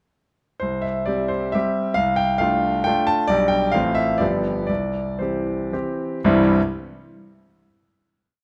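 A graceful, rustic Romantic classical dance in 3/4 and C major, this short complete piece for solo grand piano moves with rubato between 110 and 144 BPM, its dotted rhythms giving it a lilting step. The clear, intimate piano plays from 0.6 s to 6.6 s, with a single-line melody over bass and chords that stress the second or third beat, and its long sustain and audible action noise sit up front. The dance slows from 2.7 s before settling on a final chord at 6.2 s, heard through close, detailed microphones in a moderate recital-hall reverb.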